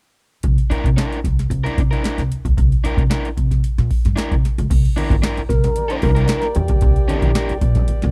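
A booming, up-front analog drum machine with a deep kick and metallic hats drives this gritty, strutting funk excerpt over a thumpy, woody upright bass and a crunchy overdriven electric guitar, while background congas join at 4.7 seconds, a tonewheel organ with key click and slow rotary speaker takes the melody at 5.5 seconds, and a warm horn section slips in behind it at 5.8 seconds.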